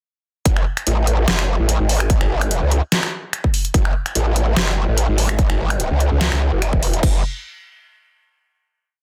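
Chaotic and heavy, this short, complete heavy wobble dubstep piece in F# minor runs at 146 BPM with a half-time feel and a slight swing on the sixteenths. It opens at 0.5 seconds straight into a drop that runs to 7.0 seconds, followed by a final note that rings out to 8.7 seconds. A growling, aggressive growl bass sits up front, spanning E1 to C#2, its detuned, formant-filtered tone saturated and compressed, with chorus and overdrive, and its modulated phrases shift in wobble speed. Alongside it plays an electronic kick drum, punchy and overdriven, paired with a dubstep drum kit of finger snaps, closed and open hi-hat, a deep snare and crash cymbal, both layered and re-recorded in a small room for a gritty, close presence. The mix is dry and dense, with a heavily limited modern master pushing the whole track hard.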